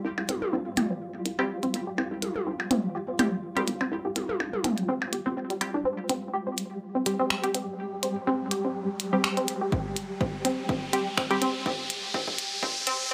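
Swung sixteenths drive this quirky, clinical minimal techno excerpt, where a clicky kit of finger snaps and hi-hat, tape-echoed percussion blips and toms, and a hollow, bouncy FM bass pumping against the sidechain start things off alongside a flickering granular texture and a squelchy, chorused, 12-bit-gritty blip pluck, with crisp, detuned wavetable chord stabs arriving at 1.4 seconds, before the bass and percussion drop out near 5.8 seconds for a filter-swept build-up in which an electronic riser enters at 8.2 seconds and a dry, punchy analog kick joins at 9.7 seconds.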